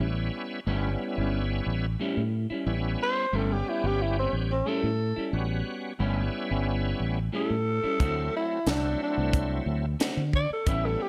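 A growling, breathy tenor saxophone carries the melody from 3.0 s, raspy and up front with scooped notes and a slapback echo, in this soulful, laid-back straight-eighth soul blues cut from a longer piece. Underneath, a bright, shouting tonewheel organ with overdrive, chorus vibrato and a slow rotary speaker holds the accompaniment, while an electric guitar through a small old amp adds dark, slightly broken-up stabs through a phaser, and a round fingered bass sits up front. A tight funk drum kit with a dry, high-tuned snare enters at 8.0 s as the harmony moves from A7 to D7, in a lightly reverberant room.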